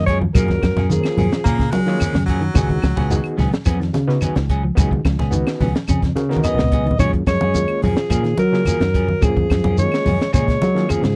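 A straight 108 BPM afrobeat groove drives this hypnotic excerpt from a longer piece. A compact cocktail kit with a punchy kick and high-tuned snare, grainy shekere, bright congas and woody claves sit under a round fingered bass, while one semi-hollow guitar plays clean arpeggios in the background and another adds picked stabs over the F#maj9 to C#7sus4 changes. A gritty, overdriven reed electric piano with fast tremolo fills out the accompaniment, and a breathy, whispered alto saxophone carries the melody with a veiled, bucket-muted trombone as second line; an edgy baritone saxophone with scooped notes cuts in briefly from 1.4 to 3.3 seconds, and the alto and trombone return during a drum fill that starts at 6.2 seconds, in a dry, close 1970s-style studio recording.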